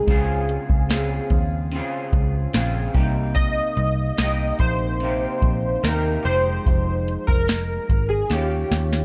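Digital ambience surrounds this hazy, sunny bedroom-pop fragment, cut from a longer piece and moving at an unhurried 73 BPM in a straight 4/4 over Dbmaj7, Cm7, Fm9 and Eb9. Up front, detuned sawtooth keys carry the round, fast-attack, decaying melody with a filter sweep, ensemble chorus and slapback echo, while a twangy, slightly broken-up electric guitar through a small old amp adds picked accompaniment coloured by analog chorus and vibrato. A dark, foam-muted picked bass and a soft vintage rhythm box, with its deep kick, crisp snare and metallic hats, sit up front from 0.1 s, and the rhythm box plays a drum fill at 8.3 s.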